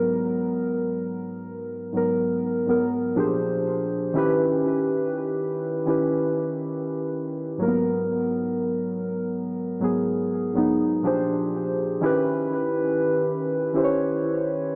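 Muted, felt-like synth keys with a dark, wave-folded edge play alone and up front through chorus and digital delay for the whole 14.8 seconds, circling G#m9, A#13 and D#7b9b13 in a slow, sensual and moody R&B fragment set in a lush hall reverb with a small-speaker sound.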